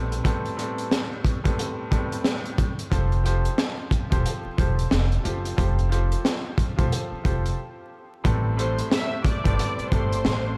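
A bright, woody upright piano and a growly pizzicato upright bass open this reflective yet tough boom-bap hip-hop excerpt over Am7 and Fadd9 chords, joined by a crunchy, saturated breakbeat kit with a tight kick and high-tuned snare, all swinging under vinyl crackle and small-room reverb, before a brief break at 7.6 seconds gives way to a lush, bowed violin section with vibrato and delay entering at 8.6 seconds.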